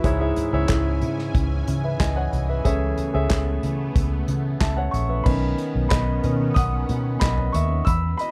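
Piano-driven pop at 92 BPM opens with an uplifting, hopeful groove: a warm, deep-voiced concert grand sits up front over a foam-muted, round electric bass, an acoustic kit played with bundle sticks (punchy kick, medium-tuned snare, handclaps, toms and dark cymbals), and a lush, detuned sawtooth pad treated with chorus and phaser. The chords move from C#m to Amaj7/C#, then settle on Badd9 as the piano steps forward with a solo at 5.3 seconds. The sound is dry and close, like a 1970s studio session, and the passage is cut from a longer piece.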